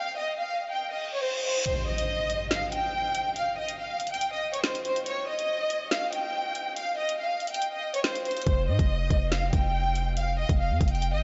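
This ominous, menacing drill hip hop excerpt moves in a half-time feel and opens with a lush, bowed studio violin section carrying the melody up front, its expressive vibrato trailed by a diffuse ambient delay. An electronic reverse cymbal leads into an impact at 1.7 seconds, where a produced drill kit enters with a woody snare and warm hats while the kick stays muted. The hard-clipped kick arrives at 8.5 seconds alongside a punchy, heavy 808-style bass, a sine tone with a noise layer, a fast attack and a decaying tail that sits prominently up front. The dreamy mix is soaked in a cathedral-sized reverb, with its highs capped at 7.8 kHz.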